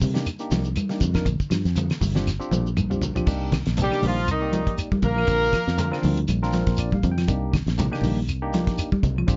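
A dry, lightly reverberant afrobeat groove in C minor at 120 BPM, funky and intense, built on a round, foam-muted electric bass and a damped 70s drum kit with a fat snare up front, ringing congas, a grainy shekere, woody claves, a dark clean guitar playing arpeggios and a barky phased tine electric piano, with a punchy horn section carrying the melody and a raspy tenor saxophone on a second line from 3.8 to 6.0 seconds, a drum fill at 2.3 seconds and an electric piano fill at 6.3 seconds.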